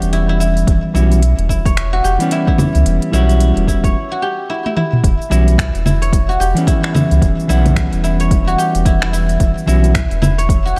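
Swung sixteenths at 110 BPM in 4/4 drive this earthy organic downtempo groove in E dorian, resting on an Em69 chord. The afro-pop kit's congas, finger snaps, smooth hats, shaker and toms carry a tape-warm studio feel, joined at 0.7 s by a punchy, layered electronic kick; a round, deep sine sub bass sits up front with sidechain pumping. Fingerpicked guzheng arpeggios ring silvery through 12-bit sampler grit and digital delay, a clean picked electric guitar pumps and echoes alongside them until 9.9 s, and a break at 3.9 s ends in a drum fill, all under light reverb in a dark mix.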